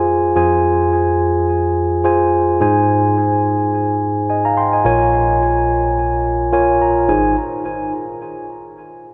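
A mellow tine electric piano plays alone from 0.0 to 7.4 seconds, clean and up front with a touch of delay, moving through Fm, Ab and Bbm7 and adding a short fill at 6.3 seconds before returning to Ab. This romantic, uplifting pop passage has a gentle swung sixteenth-note feel and is cut from a longer piece. The whole mix sits in a long cathedral reverb that gives it a dreamy, soaked atmosphere.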